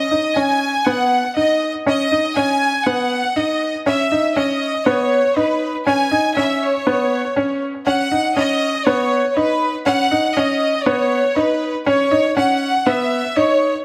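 A clear chamber violin section carries the melody up front, its bowed ensemble tone biting and earthy with a light vibrato. This is a moving, melancholic piece of electronica at 120 BPM in a straight 4/4, cut from a longer piece and tuned slightly high to A4 = 441 Hz. Beneath the strings, a bright upright piano repeats a riff in its middle register, sounding woody and slightly detuned with short sustain, and a low-pass filter sweep runs across the piano for the full 13.8 seconds. Both parts play together from the first moment, resting on a single Badd9 chord. An echo chamber reverb lends the sound a wet, roomy sheen, while the two instruments stay close in the mix, the piano keeping a natural tone.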